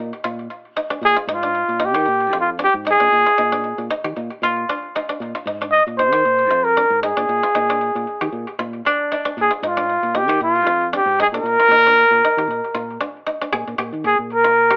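A breathy, whispered trumpet sits up front and carries the melody from 1.0 seconds, mellow and intimate in a pop style over a driving, funky afrobeat groove at 115 BPM with a light sixteenth-note swing in Bb mixolydian. Beneath it, a fingerpicked koto plays woody arpeggios through tape echo, while a round, amped fingered electric bass holds the low end on a Bb7sus4 vamp until the harmony drops out at 13.5 seconds. The whole excerpt has a moderate club reverb and a narrow telephone-like sound.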